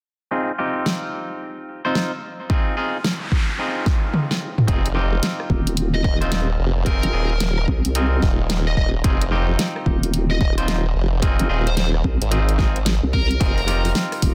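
Two wobbling, formant-filtered basses dominate this swaggering, playful glitch hop passage, one a detuned sawtooth tone thickened with chorus and tube saturation, the other nasal and resonant yet mellow. The first bass arrives at 4.7 s, with its partner close behind, and both sit up front in a dense, heavily limited mix. Before that, a bright, clean semi-hollow electric guitar plays Fm7 stabs from 0.3 s, pumping against the sidechain and moving through a low-pass filter sweep with delay trailing behind. A pop drum kit with a fat snare, rim clicks, hi-hats and toms swings over a punchy layered electronic kick, and a noise sweep and drum fill build tension as the kick briefly drops out before the basses land. From 5.9 s a dark, overdriven lead guitar adds a quiet melodic line with its own delay, all set in light reverb in this cut from a longer piece.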